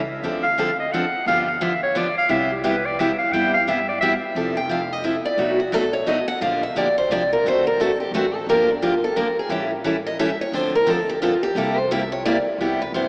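A swung waltz in 3/4 sets this charming, playful snippet of gypsy-jazz string swing, with a woody, thumpy gut-string upright bass underneath a bright, full-bodied steel-string guitar accompaniment that even carries a little finger squeak. A breathy, subtone clarinet with light vibrato takes the opening solo until 4.1 seconds, then a boxy, fresh-stringed archtop guitar picks up the melody from 4.6 seconds, with the steel-string guitar taking its own solo turn from 4.4 seconds. The whole piece sits in a vast, echoing cathedral-like space with a lo-fi AM radio tone.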